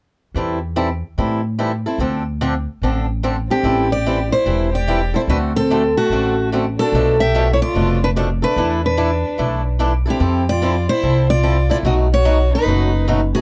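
A bright, picked steel-string acoustic guitar carries the melody up front in this fiery, swinging slice of acoustic string swing in the jazz manouche style, its fresh strings ringing with audible finger squeak. Underneath, a woody, thumpy upright bass on gut strings enters at 0.3 seconds, plucked and sitting close in the mix, joined almost at once by a boxy swing-style acoustic guitar supplying the picked accompaniment. At 3.5 seconds the lead guitar arrives together with a single bowed violin, which adds a soft-attacked second line full of vibrato and expressive portamento. The harmony moves through minor seventh chords and a D7 into a half-diminished chord, a suspended dominant and a major seventh before landing on B7. A light reverb and a dark, warm production give the small ensemble a fiery, swinging sound.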